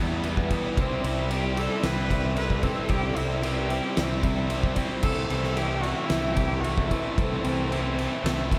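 An oversized, low-tuned acoustic drum kit sits up front in this cinematic, cathartic post-rock excerpt at 112 BPM, its boomy kick, fat snare and dark crash and ride cymbals pumping in a bright stone room from 0.2 seconds, beneath a fuzz-soaked fingered bass and two picked, distorted guitars playing riffs in the background. A clear, intense solo cello enters at 0.8 seconds with a bowed, vibrato-rich melody carrying tape echo over chords moving from Em through C to Am/C. A very quiet, twangy clean guitar and a metallic, ringing vibraphone with slow motor vibrato and tape echo spin arpeggios, while a lush studio string section holds barely audible sustained chords under light reverb.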